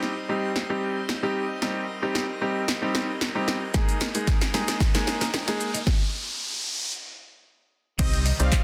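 A punchy analog drum machine drives this energetic, confident dance-pop build-up, its tape-warm kick, snare, claps, hats, shaker and crash running a fill until a stop at 5.9 seconds, while a clear, polished baby grand piano and a majestic full pipe organ pulse under sidechain pumping over C minor and A-flat suspended chords. A very quiet riser and downlifter creeps in from 1.9 seconds, and a bright, twangy twelve-string electric guitar riff with subtle chorus sits in the background from 3.7 seconds. At 8.0 seconds a round, dark dub bass and a smooth, detuned supersaw melody arrive just as this cut-down fragment closes, all in a dense, heavily limited mix with light reverb.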